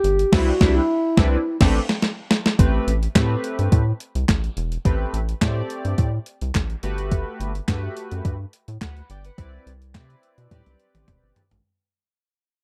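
Early-eighties boogie funk at 106 BPM in A dorian, slick and funky, where a smooth, expressive sawtooth synth lead with vibrato, chorus and slapback echo carries the melody only until 1.6 s over a rubbery, hollow square-wave bass and an up-front, overdriven 12-bit drum machine with a thumpy kick, handclaps, toms and crash, while a glossy, retro chorused polysynth enters at 0.3 s on chords such as Cmaj9, Am9 and Gmaj9 before the track fades out from 2.6 s in a dark, warm production.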